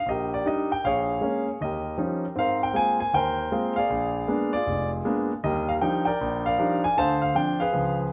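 A concert grand piano plays alone from the start in this short, playful solo jazz fragment, swinging in 4/4 at 157 BPM in Eb major and moving from Ebmaj7 through Bbm7 and Eb9 before settling onto Ab69 at 2.4 seconds. The instrument sounds intimate and polished, sitting up front with deep bass, long sustain and audible action noise beneath the notes. A moderate large-studio reverb lends the room some depth as the harmony passes through Bb7b9 and Ebmaj9 to close on Dm7 at 7.0 seconds.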